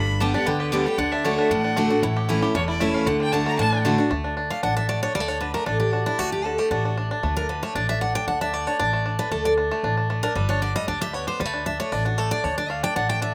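Bluegrass in D major at a driving 230 BPM, this virtuosic fragment opens with a clear, distant fiddle solo carrying light vibrato and a slapback echo, which drops out at 3.8 seconds. A bright, full-bodied picked steel-string acoustic guitar then takes the solo from 4.1 seconds while a twangy, up-front banjo played with fingerpicks adds its own melody and a woody pizzicato upright bass anchors the low end. The outdoor sound is dry and immediate, with little reverb around the players.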